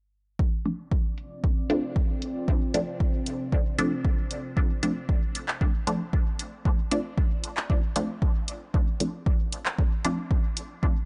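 A dark, warm mix with its top end rolled off gives this dub techno excerpt a cavernous, nocturnal feel, moving at 115 BPM in a straight 4/4 in D minor. A punchy, layered electronic kick sits up front, carrying a small-room character, while a tape-warm analog drum machine adds handclaps and hi-hats, with a low-pass filter dulling the hats and snare. A muted yet resonant dub chord stab, built from detuned sawtooth, pulse and sine tones with a fast filter pluck, is also placed up front and colored by phaser, sidechain pumping and dub echo. From 0.4 to 4.6 seconds a filter sweep runs across that stab over a Dm7 chord. Alongside it, a deep, moody pad of detuned unison sawtooth and a sine sub octave holds slow-attack sustained chords with chorus, reverb and pumping, sounding only from 1.3 to 4.5 seconds before the groove carries on.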